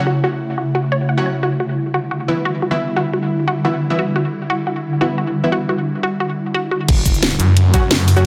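Lightly reverberant and up front, this dark technical drum and bass excerpt feels futuristic and mechanical. A swarming, wave-folded drone pumps through sustained chords while bold orchestra-hit-like synth stabs ring into reverb and dub echo, and a lush, warbling unison pluck spins bright arpeggios through a filter sweep. At 6.9 seconds the drop hits: a snarling, saturated saw bass growls forward over a knocking, tape-warm electronic kick and a layered kit of cracking snare, hi-hat, shaker and crash cymbal, its hats, snare, shaker and cymbals dulled by low-pass filtering.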